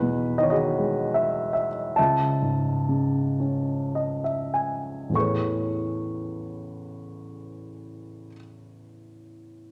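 This is a classical, lyrical solo piano piece in a calm mood, moving at a rubato 48 to 80 BPM in 3/4 and set in A lydian. A single warm grand piano carries everything, sitting up front with a short sustain and ranging from A1 up to C#6. The opening phrase gradually slows, passing from Emaj9 to Amaj7/C#, and the piano adds a brief fill from 3.4 seconds. At 5.1 seconds a new section begins on an Amaj9 chord. A moderate scoring-stage reverb gives the room a gentle sense of space around the instrument, and the passage is cut from a longer piece.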